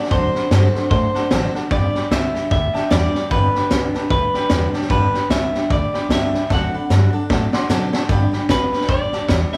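Rockabilly with an upbeat, retro swing, cut from a longer piece, where a twangy, slightly broken-up electric guitar through a small old amp carries the melody up front over a punchy vintage drum kit with a high-tuned snare and a thumpy, gut-strung upright bass. A bright, full-bodied steel-string acoustic guitar and an intimate upright piano, its action noise audible and sitting in the background, provide the accompaniment, moving from D7 to G. A drum fill runs from 6.5 to 8.1 seconds before the band returns to G, all playing live in one room with a moderate large studio reverb.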